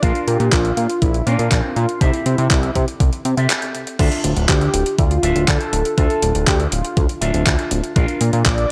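A fat, detuned sawtooth bass with tube saturation sits up front in this melodramatic, nostalgic italo disco excerpt, beneath a bold, wave-folded unison lead with vibrato, subtle chorus and tape echo, dark picked guitar stabs through an envelope filter, and an overdriven, thumpy electronic kick alongside a 12-bit drum machine's crash, handclaps and hi-hat, both re-recorded in a large room, with a dry, gritty hardware sound, digital ambience and a short break at 3.5 seconds.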